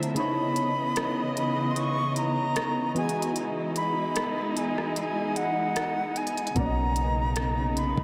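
An airy silver concert flute with vibrato carries the melody from 0.2 s through a diffuse ambient delay, floating over chorused, detuned sawtooth analog keys and a bowed studio string section with portamento holding sustained chords across C#m9 and Emaj7, while a produced electronic drum kit of soft kick, crisp hats and rim clicks swings gently at 75 BPM throughout, joined by a deep, boomy 808-style bass that arrives on Bmaj9 at 6.6 s, giving this smooth, tender contemporary R&B excerpt a dreamy mix soaked in huge reverb.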